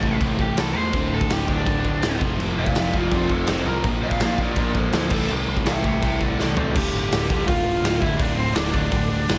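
A dark, picked overdriven electric guitar solo with delay opens this angry, aggressive punk rock excerpt at 165 BPM, over a gritty, punchy garage drum kit up front in a bright stone room, a growling picked bass in the background, a very quiet double-tracked fuzz guitar, a very quiet sludgy distorted guitar and a raw garage guitar riff in the background that drops out at 6.7 s, just after a drum fill at 6.4 s leads into a new section on Dm at 6.8 s, with light reverb.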